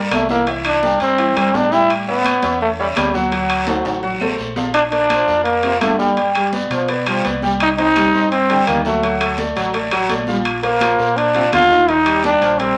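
Set in a lively club-style room reverb, this driving, passionate salsa excerpt moves at 168 BPM, with a gritty, growling solo trombone up front carrying the melody over a brilliant baby grand piano's long-sustaining accompaniment and a round, dark, fingered electric bass. Ringing metal-shell timbales, compressed high-tuned congas, a raspy guiro and woody vintage claves drive the percussion, and a drum fill from 3.7 to 4.8 seconds leads into a new section. A tight, smooth-topped trombone section enters with a second line at 5.1 seconds.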